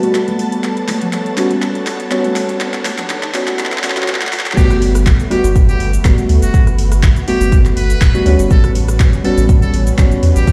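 Played through a big sound system in a bare stone room, this cut from a longer deep house track has a light, high-passed reverb around it and a relaxed, warm mood. It opens as a build-up, with a soft, vintage string machine, a warbling, nostalgic, lo-fi pad and a lush, bowed violin section sitting in the background, all pumping against the sidechain. Deep, mellow chord stabs with chorus and dub echo join them, along with a very quiet electronic riser, a filter sweep and a drum fill. The drum kit adds tape-warm cabasa, crash cymbal, handclaps, metallic hi-hats and rim clicks, while bright, high-tuned congas tap along in the background. At 4.6 seconds the drop arrives: the violins fall away, a round sine sub bass and a deep, layered electronic kick push up front, and a brilliant, buzzy muted trumpet with digital delay takes a distant, roomy jazz-style solo. The harmony moves from a Gmaj9 chord to A13 at 8.5 seconds, keeping the groove lightly swung and relaxed.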